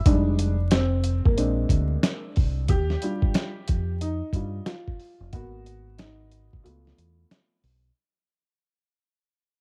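Cool and smoky, this jazz-hop excerpt at 91 BPM with a swung 16th feel sets a woody, boxy upright piano soloing through rich jazz chords such as Fm9 and D#maj9, over a round, dark fingered electric bass with transformer saturation and a gritty, compressed sampler-style drum kit with a thumpy kick, medium-tuned snare and hi-hat, all up front in a dry, cassette-dusted home recording with vinyl crackle that fades throughout and drops into a break on C#7alt at 6.6 seconds.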